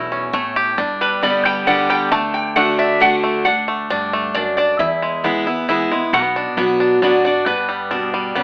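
In a straight three-beat metre, this short, joyful and virtuosic bluegrass excerpt opens with a nasal, metallic lap resonator guitar taking a steel-bar slide solo from 0.0 to 3.5 seconds, up front alongside a twangy, percussive fingerpicked banjo melody and a full-bodied jumbo steel-string guitar whose picked accompaniment carries finger squeak on fresh strings, while a woody, thumpy gut-string upright bass plucks darkly in the background, all set in a lively studio room with an AM-radio tint.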